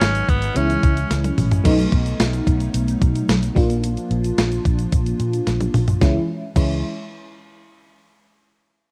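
This dry, cassette-bound home recording has the hazy, slightly worn sound of a demo tape, cut from a longer 1980s-style pop piece that moves at 110 BPM in a straight 4/4 with a nostalgic yet urgent mood. A raspy, forceful tenor saxophone opens with a brief, gritty solo phrase carrying vibrato and tape echo, falling silent by 1.1 seconds. Up front, an FM electric piano layered with a soft pad supplies lush, dreamy chords colored by chorus and phaser, moving from G#m7 and C#m through B7 and A# before returning to C#m at 6.0 seconds. A clean 12-bit drum machine, also up front, drives the track with a thumpy kick, medium-tuned snare, hi-hat, tambourine, crash and toms, with fills at 1.1 and 5.5 seconds. Underneath, a foam-muted fingered electric bass gives round, punchy low notes, while a grainy egg shaker ticks quietly in the background.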